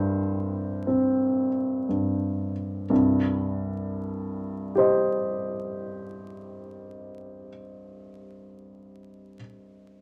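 A close, intimate baby grand piano carries this short fragment of a mournful romantic nocturne in C minor, played alone at a very slow 28-34 BPM with free rubato and the soft clatter of its action audible beneath the notes. The opening, starting from a C5, slows down through the first 2.9 seconds before a new passage settles onto a C minor chord, the piano moving between C2 and Eb5. A moderate studio reverb gives the natural tone some room, while a vinyl crackle adds a worn, melancholic patina.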